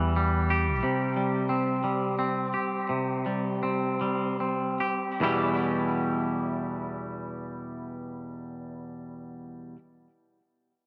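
A clean, twangy electric guitar sits up front, fingering arpeggios in a slow 6/8 rock passage that feels brooding yet cathartic, its tone bathed in lush chorus and tape echo. A growling, overdriven picked bass plays alongside it only for the opening 0.8 seconds on a low E before dropping away. From 0.8 seconds the pace eases and slows down until 5.2 seconds, moving from E minor to a C5 chord, where a new section begins back on E minor. The guitar carries on alone through 9.8 seconds. A moderate large-studio reverb blends with a small room ambience, and the top end is soft and rounded, giving this fragment of a longer piece a dark, spacious glow.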